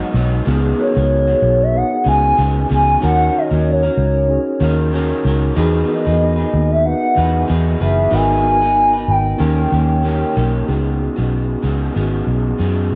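A hollow, woody synth lead with lush chorus and tape echo sings a wistful melody over a slightly broken-up guitar with subtle chorus and vibrato, a round, punchy muted bass up front and a mellow tine electric piano, in this hazy, gently swung indie pop excerpt at 94 BPM, where the lead drops out at 10.4 seconds, just before the chords return to C#7sus4, in a moderate echo chamber reverb.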